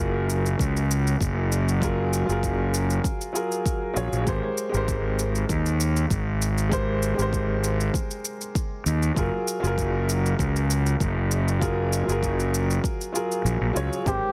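A heavily squeezed, radio-like sound with a moderate plate reverb frames this blissful, relaxed sunset chillout excerpt. A smooth, vintage grand piano with digital delay and a round, fuzzy fingered electric bass sit up front, while a layered electronic shaker and a deep, overdriven kick carry the beat until the kick drops out at 13.5 seconds. At 14.1 seconds a cup-muted trumpet enters with a soft, veiled jazz-style note, joined by low-tuned bongos in the background, just as the recording ends.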